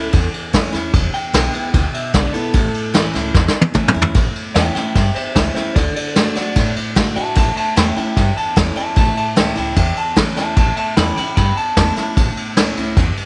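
Upbeat and retro, this rockabilly fragment features a twangy, slightly broken-up electric guitar playing a clean solo through a small old amp, colored by tape echo. Underneath, a bright, full-bodied steel-string acoustic guitar provides picked accompaniment, a woody, thumpy upright bass is plucked on gut strings, and an up-front, small-room brush kit with a punchy kick and dark cymbals plays a fill between 3.3 and 4.2 seconds. Light studio reverb surrounds the whole, which has a rolled-off top end.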